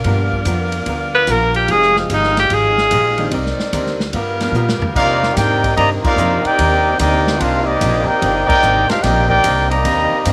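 A clear, vintage-toned tenor saxophone sits up front, stating a short solo line with light vibrato from 1.1 seconds in this swinging, dramatic big band excerpt in C minor at 147 BPM. Beneath it, a soft-attacked saxophone section holds sustained chords, and a clear concert grand piano with deep bass comps through the opening half over G7#9, Fm9 and Cm9 harmonies. A woody, thumpy pizzicato upright bass anchors the low end. A dark, clean hollow-body electric guitar adds picked accompaniment in the background, while an airy, polished drum kit with dark cymbals and a punchy kick keeps the swing feel and plays a fill at 4.5 seconds. At 5.0 seconds the trumpet section takes over the melody with a smooth top, backed by a trombone section's second line and band accents, all set in light studio reverb.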